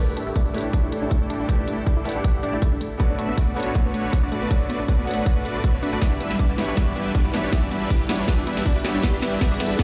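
Dreamy and emotional, this future bass build-up at 159 BPM in B minor rides a half-time, lightly swung feel, led by a huge, detuned supersaw riff with 12-bit grit, sidechain pumping, dub echo and a filter sweep, while a lush pluck arpeggio enters at 0.2 s with its own pumping, echo and sweep. Underneath, a clear concert grand piano with deep bass pumps and echoes in the background, a very quiet bowed string section holds sustained chords with vibrato, and a faint electronic riser sits beneath as the harmony moves from A7sus4 through Bm7 and Em7 to Gmaj7. A hard-clipped kick lands up front from 0.4 s beside a trap kit of sharp snare and bright hats, and the drums play a fill from 6.0 s. The mix sounds as if played on a big system in a bare room, with large studio reverb and a muffled top end.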